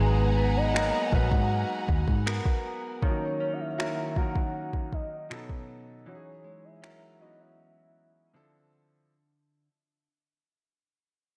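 Contemporary R&B at 79 BPM with a longing, late-night mood, this fading fragment of a longer piece drifts through G#m9, D#m7, B9 and Emaj13 before landing on Dm9 during a break at 8.3 seconds. A soft, octave-layered synth lead with a dark, round tone carries the melody through chorus, tremolo and delay, over a clear concert grand piano with audible action noise, a direct-recorded clean electric guitar picking arpeggios through lush chorus and delay, and a bowed string section that sustains expressive chords only until 3.0 seconds. A foam-muted, round fingered bass sits up front briefly at the start, while an overdriven electronic drum kit of finger snaps and soft kick plays from 0.8 to 7.0 seconds, all inside a dreamy mix soaked in plate reverb.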